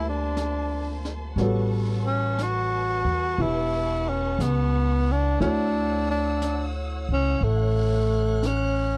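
A breathy tenor saxophone carries the melody up front, its whispered tone colored by light vibrato, soft attacks and scooped notes in an intimate jazz style. This romantic jazz ballad, cut from a longer piece, moves with a gentle swing in four, its harmony shifting from Gm11 to A13 at 1.4 seconds and settling on Dmaj9 at 5.4 seconds. A woody, growly upright bass sits equally forward, plucked with a dark, thumpy weight, while a clear grand piano accompanies in the background, its action noise audible. A lush string section holds sustained chords at a distance, bowed with vibrato and expressive portamento. A brush drum kit enters at 0.4 seconds in the background, with a high-tuned snare and hi-hat, and the whole take has the dry, close feel of a 1970s studio recording.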